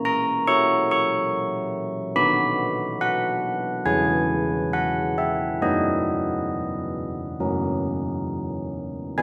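Mellow bronze carillon bells with a padded clapper, a ringing minor-third overtone and an up-front presence play a serene, festive classical church-bell tune alone in B major at 67-71 BPM, moving through F#7/A#, B, C#m/E, B/F# and F# over 9.2 seconds in a wet scoring-stage reverb, cut from a longer piece.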